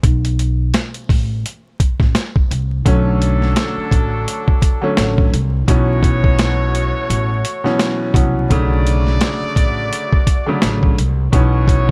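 Boom-bap hip-hop in B minor at 85 BPM with a swung 16th feel, moody and reflective, cut from a longer piece and dry in sound with vinyl crackle throughout. It opens with a break of gritty, pitched-down sampler drums, thumpy kick and high-tuned snare alongside a woody pizzicato upright bass. At 2.9 seconds a warm baby grand piano and a clear jazz trumpet section with light vibrato and slapback echo join as the harmony moves between Bm9 and A6/B.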